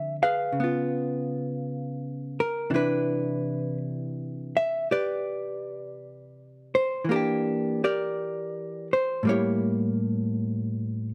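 Swung at a slow 55 BPM in 4/4, this late-night jazz ballad in C major unfolds as a tender excerpt from a longer piece. A lone hollow-body electric guitar carries everything, its dark, clean, picked tone compressed and up front with light reverb, ranging from A2 to F5. The chords drift from Dm7 through Db7 to a lingering Cmaj9, then turn through Em7b5 to A7b9 near 9.2 seconds.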